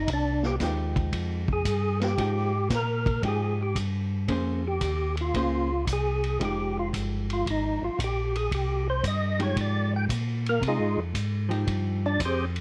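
A swung 4/4 groove at 114 BPM drives this late-night, smoky soul jazz organ trio excerpt in F minor, moving from Fm9 to Bbm9 at 4.3 seconds and back to Fm9 at 6.4 seconds. A fat, lightly overdriven tonewheel organ with third-harmonic percussion, key click, chorus vibrato and a slow rotary speaker takes the solo melody up front, while a second, round and mellow tonewheel organ with tube saturation carries the bass line, a dark, compressed hollow-body electric guitar comps from 0.6 seconds, and a vintage kit with a punchy kick, medium-tuned snare, hi-hat and dusky ride sits lower in the mix. Light reverb and the worn, warbling pitch drift of old cassette tape give the whole trio a faded patina.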